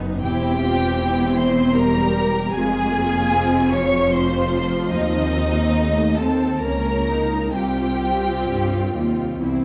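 Melancholic and elegiac, this brief excerpt from a slow romantic movement for string orchestra moves in a flexible, rubato triple metre. The first violins carry the melody high in their range with a lush, vibrato-rich tone that sounds somewhat distant, while the second violins trace a smooth, even second line an octave below. Beneath them, the violas supply close, focused accompaniment, the cellos ground the harmony with a full, bowed bass, and the double basses add a rich, far-off depth at the bottom. The lower strings begin at 0.0 s and the violins join at 0.2 s. The harmony passes from C7/E to F minor, F7/Eb and Bbm/Db before settling on a Csus4 at 7.5 s. A moderate scoring-stage reverb and a dark, warm production wrap the ensemble in a mournful glow.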